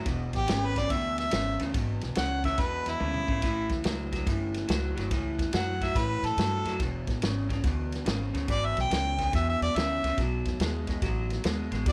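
A swung shuffle in four drives this gritty, swaggering electric blues, with a vintage drum kit's punchy kick, dark ride cymbal, snare and toms sounding natural in a small room and breaking into a short fill at 3.0 seconds as the chords move from E7 to A7, back to E7 and on to B7. Up front, a picked, slightly broken-up guitar riff through a small old amp, lo-fi and compressed with lush chorus, pairs with a woody pizzicato upright bass colored by transformer saturation. From 0.4 seconds a warm, overdriven harmonica takes a present, jazz-style solo full of scooped notes, framed by light reverb and studio ambience.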